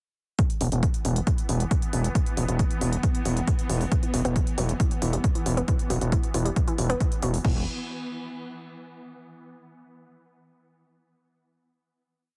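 A gritty, nasal synth bass sits up front in this hypnotic, industrial peak-time techno piece, its saturated sawtooth tone with oscillator sync playing off-beat against a punchy, tape-warm four-on-the-floor kick. A programmed techno kit adds smooth closed and half-open hats and a crash, with the hats, cymbals and bass all pumping to the sidechain. From 1.0 s, a swarming, tense drone creeps in with a slow attack, its detuned, warbling unison voices turned granular and bathed in built-in reverb as it pumps along with the groove. At 4.0 s, a round, wave-folded analog pluck enters with chorus and delay, repeating a 12-step sequence that drifts against the bar. The whole mix carries a heavily compressed, radio-like sound over a single E5 chord, and the groove gives way at 7.4 s to a final note.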